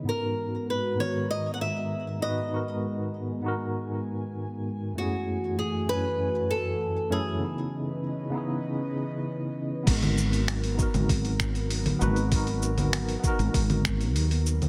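A bright, fingerpicked flamenco guitar carries the melody with digital delay from 0.1 to 9.2 seconds in this smooth, wistful sunset chillout excerpt at 98 BPM in G# minor, over a worn, slightly out-of-tune tine electric piano with medium tremolo and an airy, breathy pad with chorus and a filter sweep, until at 9.9 seconds a growly, round fretless bass, a gritty, overdriven sampler-style kit of cabasa, congas, hi-hat, finger snaps and crash, and a thumpy electronic kick arrive beneath light digital reverb.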